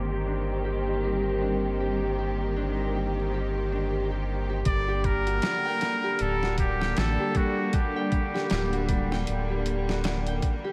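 Brooding and cinematic, this trip hop excerpt moves at 78 BPM in 4/4 with a swung sixteenth feel, set in G harmonic minor and drenched in plate reverb, vinyl crackle and a low-pass filter that make the mix dreamy. From the start, a clear, earthy string section holds sustained chords and a fingerpicked Celtic harp ripples through arpeggios, both carrying a vintage 12-bit sampler grit, with tape echo trailing the harp. A round, deep analog bass sits up front underneath, while a very quiet, breathy wind-like noise layer drifts in at 0.4 seconds and a metallic vibraphone with medium hard mallets adds ringing accompaniment from 1.0 seconds, shimmering with harmonic tremolo and tape echo. At 4.7 seconds the second section opens as a pitched-down, compressed boom bap kit arrives with a thumpy kick, medium-tuned snare and hi-hat. At the same moment, a nasal straight-muted trumpet takes the jazz-style solo melody up front, its scooped notes and vibrato echoing on tape. 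The harmony shifts from Eb6/G to Gmadd9, and the piece is cut from a longer work.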